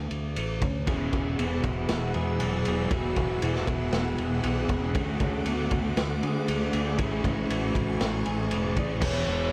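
Blissful and wistful, this short shoegaze and dream pop excerpt moves at 118 BPM in E mixolydian, with a soft, round sine lead carrying the melody through chorus and tape echo over a bright fingered electric bass and an up-front garage drum kit that sounds gritty, boomy and pumping in a small room. From 0.9 seconds, a shimmering string machine of violins holds sustained chords while a twangy twelve-string electric guitar plays arpeggios; in the background, an overdriven lo-fi garage guitar with reverse reverb and a dark fuzz guitar play riffs, and a tight, double-tracked distorted guitar joins at 9.0 seconds. The chords move from D5 through Eadd9, D and Amaj7 to E7(no3), in a moderate studio reverb with vinyl crackle.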